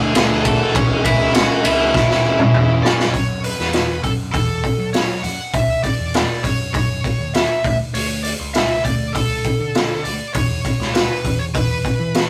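A biting, overdriven lead guitar leads this brooding, cathartic alternative rock excerpt in F# minor at 100 BPM, carrying the melody between C#4 and A5 over a straight 4/4 pulse. Beneath it, a distorted electric guitar and a compressed fuzz guitar sit in the background playing a riff over Dsus2 and C#m, both dropping out at 3.1 seconds after a drum fill that starts at 1.9 seconds. The raw garage drum kit is up front, with a punchy kick, medium-tuned snare, hi-hat, ride and toms sounding gritty and saturated, their top end rolled off in a small room. A growling picked bass, bright and overdriven, runs from G#1 to F#3 under the harmony as it moves through F#5, D5 and E5. The whole take has the rough feel of a rehearsal room, with tube saturation and light reverb.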